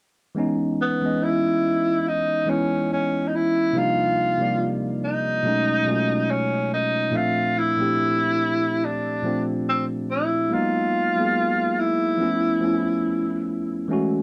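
A worn, slightly out-of-tune tine electric piano opens this hazy, reflective hip hop fragment, its low-pass-filtered chords sitting clean and up front as they move from C#m9 through B13 and A#maj9#11 toward a closing C#7alt. At 0.8 s a breathy tenor saxophone enters with a mellow, whispered subtone solo in jazz style, using soft attacks, scooped notes and vibrato, and it sounds both intimate and distant under its own low-pass filter. A wet studio ambience gives the swung groove a roomy glow before the saxophone stops at 13.5 s and the piano carries on to the cut at 14.2 s.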